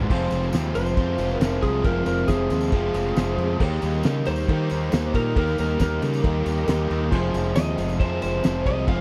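A driving, brooding classic rock passage in F minor at 137 BPM opens on a growling, overdriven fingered bass up front, with three overdriven guitar riffs (a picked electric part, a raw double-tracked garage guitar and a very quiet sludgy one) over a dark, woody upright piano and a barely audible tonewheel organ with fast rotary shimmer. From 0.1 seconds a cloth-damped, thuddy drum kit with a fat snare and dark cymbals joins, along with a very quiet picked steel-string acoustic guitar with finger squeak and a jingly, distant tambourine, as the chords move from Fm to Eb and back. At 0.8 seconds a compressed, slightly broken-up electric slide guitar, played with fingerpicks and coloured by tape echo, takes the solo in a dry, close 1970s-style studio sound.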